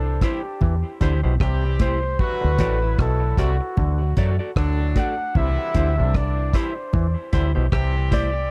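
An echo-heavy mix opens this uplifting roots reggae excerpt, where a mellow flugelhorn with vibrato carries the melody over a tight horn section doubled in octaves, both sharing tape echo with a clean, dark electric guitar, while a round, punchy dub bass and a dry, cloth-damped drum kit of hi-hat, tight kick and rim click sit up front, a stringy clav stays in the background from 0.6 s, and high-tuned congas played with soft hands sit very quietly underneath.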